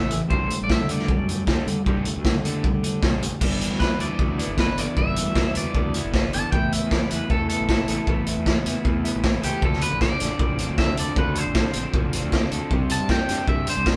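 A raw garage drum kit drives a straight four-beat pulse from 0.1 s, its punchy kick, medium-tuned snare, hi-hat and crash sitting up front with a gritty, saturated, rolled-off character that sounds like a small, natural room. This short indie rock passage feels jangly and carefree, with the whole band playing live together under light reverb. Underneath, a fingered electric bass growls with fuzz and overdrive in the background, alongside a crunchy overdriven guitar riff and a twangy, compressed twelve-string electric guitar picking out its own riff. On top, a picked electric guitar at the edge of break-up carries the melody through a shimmering harmonic tremolo. A clean guitar solo enters at 3.4 s, riding chords that move from G6 through Asus2, Dm7 and Csus2 until the passage cuts off at 14.0 s.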